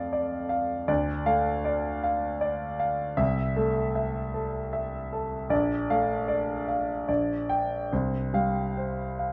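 A present, up-front grand piano with long sustain rings in a moderate large-studio reverb, giving this short fragment of a longer romantic character piece an intimate yet spacious sound. The solo piano plays in 3/4 with flexible rubato and uneven beats, its lyrical, passionate phrasing spanning from the deep bass into the treble. Over about nine seconds, the harmony moves from Dm/F and Dm through Am/C, Bbmaj7 and Gm/Bb before arriving on Csus4.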